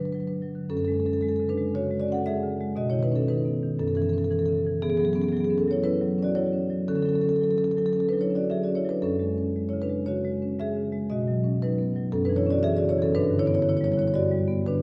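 The rhythm moves freely in rubato over a 4/4 pulse near 116 BPM, giving this contemporary classical piece for solo marimba a hypnotic, reflective mood in F# minor. The marimba, played with soft mallets, carries the whole passage and spans F#2 to F#5, its tone mellow, round and full, captured close and placed up front. A recital hall reverb of about 1.5 seconds surrounds it, and the overall production leans dark. The harmony opens on a rootless Gmaj7, settles on F#madd9 from 0.7 seconds, then drifts through Badd9, F#m7, E69 and Dmaj7 before returning to F#madd9 at 9.0 seconds. The passage closes by moving through Badd9 and a bare F#5 to Gmaj7 at 13.1 seconds, and it is cut from a longer piece.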